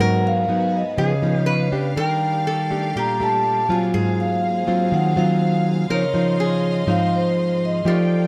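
A dark, fingerpicked nylon-string guitar sits up front in this breezy, sunny bossa nova at 122 BPM, carrying a classical-style accompaniment through chords such as Abm7, Ebmaj9#11 and Dbmaj9. Above it, a vibraphone with medium hard mallets and its motor off plays the ringing, metallic melody in a boxy small-room tone, while a nasal lap resonator guitar, played with fingerpicks and slide, adds a second line. A studio string section holds intimate, soft-attack, sul tasto chords with vibrato, and the close, detailed recording with little reverb frames this passage cut from a longer piece.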